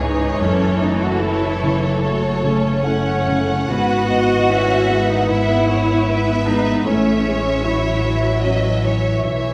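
This sorrowful, moving cinematic score excerpt opens with the full orchestra at once, at a rubato 75 BPM in 4/4. Two bowed violin sections carry the melody and a second line with rich vibrato, one focused and distant, the other with a smooth top, while a roomy solo clarinet in classical style adds its own second line until 8.4 s. Beneath them, a viola section sits in the background with expressive portamento in the accompaniment, and an intimate concert grand piano shares that role, its action noise audible and its low register deep. A vintage-toned French horn section holds sustained chords with light vibrato in the background, while a dark, woody cello section plays the bass until 8.5 s alongside a smooth, even double bass section. The harmony moves from F#m7 through Eadd9/G# to A, heard in the wet reverb of a scoring stage.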